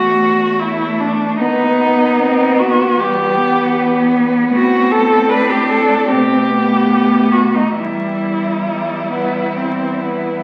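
A classical, lyrical passage for cello ensemble, cut from a longer piece, unfolds at an unhurried, rubato pace with a yearning, elegiac mood. Four cellos play together throughout the 10.4 seconds, each a single bowed player with a rich tone and vibrato. The up-front melody cello sings expressively with portamento, and a second line carries the same expressive sliding character just beneath it. A focused accompaniment cello fills the middle, while the bass cello sits close with a smooth, even sound. The harmony moves from an opening suspended chord through minor and altered dominant colors before settling back on E minor. The ensemble rings in a wet stone room and carries the crackle of a very old 78 rpm record, lending the sound an aged, distant patina.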